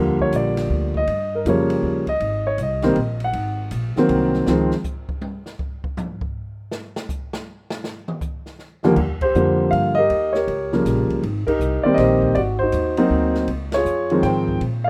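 Relaxed and warm, this swinging jazz piano trio piece in 3/4 moves at 160 BPM in Eb major. The woody, polished upright piano carries the melody up front with long sustain, backed by a growly, bright pizzicato upright bass and an open acoustic drum kit, with dark cymbals and a boomy kick, that takes a short solo from 4.5 to 9.0 seconds. The piano and bass return by 9.0 seconds for band accents over a rough home-demo mix with studio reverb, in a clip cut from a longer piece.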